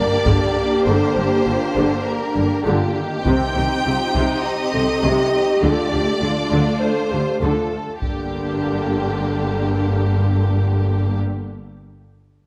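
A straight 4/4 pulse drives this dramatic, relentless cinematic orchestral cue, cut from a longer piece, where a focused, lush violin melody rides over a soft-attack second violin line, expressive violas with portamento, a mellow, distant French horn section holding sustained chords in the background, and a bass of rich cellos and warm double basses, while heavy-stick taiko drums, close and dry, strike from 0.3 to 4.4 seconds and return at 8.0 seconds inside a moderate scoring-stage reverb.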